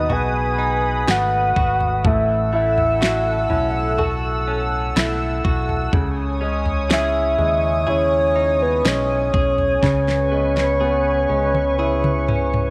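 A soft, octave-layered synth lead carries the melody up front from the first moment, its dark, round tone thickened with chorus and vibrato, over a clear baby grand piano, a shimmering chorused pulse-width pad and a fingered electric bass. This is a melancholic, longing pop ballad in a slow, straight 4/4, cut from a longer piece. The smooth R&B drum kit enters at 0.1 seconds with a knocking kick, a fat snare and toms, its electronic, produced sound carrying a tape-like warmth. A clean, bright electric guitar sits in the background picking compressed arpeggios, while the polished piano supplies accompaniment and the mellow, retro pad holds sustained chords with a slow attack. Beneath them the round, amped bass anchors the harmony as the chords move from B7 through F#m7/A and C#madd9 to C#m7. The drums close with a fill from 9.8 seconds to the end at 12.7 seconds, all set in a light reverb.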